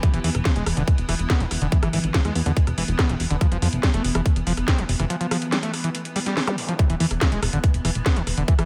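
A screaming, squelchy acid line with distortion, chorus and tape echo drives this intense, alien psychedelic trance excerpt at 142 BPM in 4/4, pumping against a tight, up-front electronic kick and a punchy, funky analog bass plucking low beneath it. A drum and bass kit adds a cracking snare, metallic hi-hats and rim clicks, while an evolving, morphing wavetable pad holds sustained chords in the background through ensemble chorus and phaser. The chords move from E5 to F5 at 3.4 seconds and back at 6.8 seconds, with a break from 5.1 seconds and a brief electronic zap at 6.5 seconds, all in light reverb.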